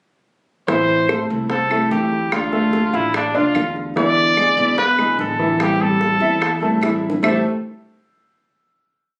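Nostalgic and danceable, this short Cuban son and guajira piece sets a punchy, up-front trumpet with vibrato singing hook phrases over an intimate piano montuno in octaves with audible action noise, a strummed nylon-string guitar with muted slaps, a growly pizzicato upright bass tumbao that anticipates the chords, steady eighths on tight, high-tuned bongos and a woody two-bar clave time line, with a drum fill at 6.8 seconds leading into a final chord, the whole captured on a phone in a studio room with moderate reverb and compression.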